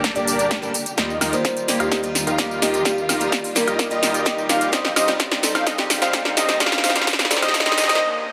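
A steady, straight 4/4 pulse at 128 BPM drives this emotional, anthemic festival progressive house build-up, cut from a longer piece, with a drum fill running through it, sidechain pumping on most of the melodic layers, a brief stop near 8.0 seconds, and a final swell. Up front, a big-room dance kit brings a punchy snare, metallic hi-hats, tambourine and woodblock, while a layered electronic kick sits further back and drops out at 7.6 seconds. A huge, detuned supersaw riff and a bold, thick unison lead playing arpeggios both carry filter sweeps, with delay trailing the lead, as a deep, saturated sub bass anchors the low end beneath them. Behind these, a boxy, picked swing-style acoustic guitar and a dark, lush bowed string section hold the harmony through G minor, E-flat add nine and C minor. A round marimba with soft mallets adds a short delayed melody from 1.3 seconds, and a very quiet electronic riser creeps in at 3.5 seconds, all bathed in a wet hall reverb.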